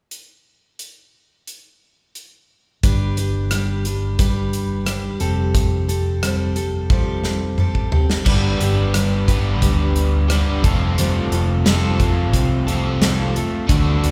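The natural country drum kit sits up front with a punchy kick, medium-tuned snare and dark cymbals, opening alone over the first few seconds with kick, snare, rim click, hi-hat, toms and crash. This wistful, reflective slice of folk rock and heartland rock moves at an unhurried, straight pace in 4/4. At 2.8 seconds a bright, full-bodied picked steel-string acoustic guitar and a dark, round fingered electric bass come in together over a gentle shift between G and Fadd9. A drum fill leads into the final section, where a double-tracked, crunchy overdriven electric guitar adds a riff from 8.2 seconds. The whole recording sits in a wet cathedral reverb with a long decay, giving it the sense of a church or concert hall, and it is cut from a longer piece.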